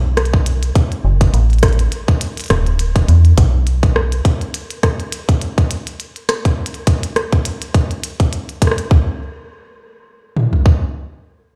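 A swung sixteenth-note groove in 4/4 drives this cerebral, eerie IDM piece, built from a glitchy electronic kit of clicky hi-hats and rim clicks alongside a second kit whose tight, tape-warm kick and toms sit up front and carry on until 10.8 seconds. A metallic, digital FM bass with a fast attack and a mellow, decaying tone anchors the low end until 4.2 seconds, while the drums wear a touch of studio reverb. The mix is fairly dry overall, yet it sounds as if it were played through a big sound system in a bare stone room.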